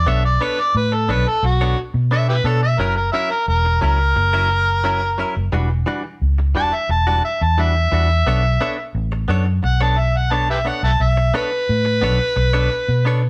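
Smoky and mournful, this blues in B minor moves at 88 BPM in a straight 4/4, a short passage cut from a longer piece where an overdriven harmonica takes a jazz-style solo throughout, gritty and up front with light vibrato, scooped notes, tongue slaps and a soft attack. Beneath it, a vintage foam-muted fingered electric bass sits dark, round and punchy, while a clean, direct-recorded electric guitar adds bright, twangy, compressed stabs from 0.1 seconds over chords moving from Bm9 to F#7 and Em9 before returning to Bm9. The band sounds like it is playing live in one room, wrapped in moderate studio reverb.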